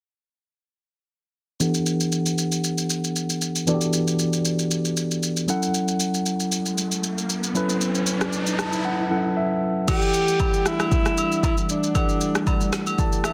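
A late-night, soulful amapiano excerpt at 116 BPM with a swung 16th feel in E dorian, where a worn, slightly out-of-tune tine electric piano sits up front through a low-pass filter sweep over Em11 and F#m7 chords alongside a layered deep house kit with a deep kick and a woody, soft-clipped snare, until an electronic riser at 6.6 seconds leads into a section from 9.9 seconds that brings a breathy alto saxophone melody with light vibrato, scooped notes and digital delay, and vintage agogo bells and woodblock, joined shortly after by an ethereal pad in the background with ensemble chorus and sidechain pumping, all in a dense, heavily limited modern master with light reverb and digital ambience.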